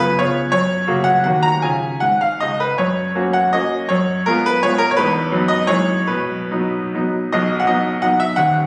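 Captured on a phone in the room, this short cut from a longer piece carries a moderate concert hall reverb with a 2.2 s decay, added studio reverb, compression and a faint mains hum beneath the music. It is a classical romantic dance in triple time for solo baby grand piano, proud and graceful, moving with dotted rhythms and free rubato at a tempo that ranges from 132 to 185 BPM. The piano sounds brilliant and up front, with a natural tone and short sustain, and it spans from the deep bass up into the treble. The harmony circles around F# and C# before settling into B major at 5.0 seconds, where a rich chord sequence resolves onto B. A new section begins at 7.3 seconds and runs to the end at 8.7 seconds.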